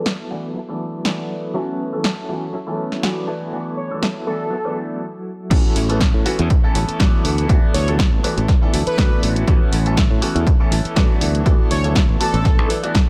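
A dry cut from a longer filtered disco house track, joyful and funky, with a filter sweep over the opening before a brief stop and the drop at 5.5 seconds. A brilliant, long-sustaining grand piano with phaser moves between D69 and A6 chords beside a clean, compressed electric guitar riff tucked in the background under tremolo. A punchy analog drum machine supplies crash, hi-hat and snare, and a bold, fat sawtooth synth brass melody with chorus and tape echo appears briefly at 3.8 seconds and returns later. From the drop, a growly fingered electric bass and an up-front electronic kick join, with sidechain pumping on the piano, guitar, brass, bass and the drum machine's hats and cymbals.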